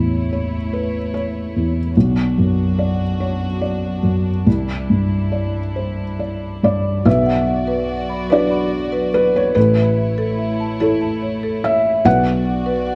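A felt-muted upright piano and a small chamber string section open this reflective, longing neoclassical piece together, moving in a slow, rubato 6/8 at 48 BPM in B minor. The piano sits up front as a mellow, intimate accompaniment, its thick felt dulling each note while the soft clatter of its action stays audible. Behind it, the strings hold quiet sustained chords, bowed sul tasto with light vibrato and a soft attack for a close, hushed ensemble tone. At 7.1 s a marimba enters with woody arpeggios in a higher register, trailed by a slapback echo. The harmony drifts from A to B minor and C add9, then returns through B minor and A before settling back on B minor. Light reverb and a dark, warm production frame this fragment, which is cut from a longer piece.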